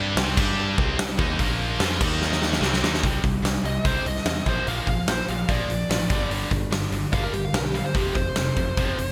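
A bright 1980s-style digital production with light small-room ambience frames this anthemic, swaggering hard rock at 146 BPM. Riffs come from a very quiet, scooped electric guitar, a double-tracked high-gain guitar that drops out at 3.0 seconds, and a tight distorted guitar sitting in the background. A punchy picked bass and a huge, up-front arena drum kit with gated reverb drive the track, the drums entering at 0.2 seconds and playing a fill before a dark, bluesy overdriven lead guitar begins its solo at 3.7 seconds.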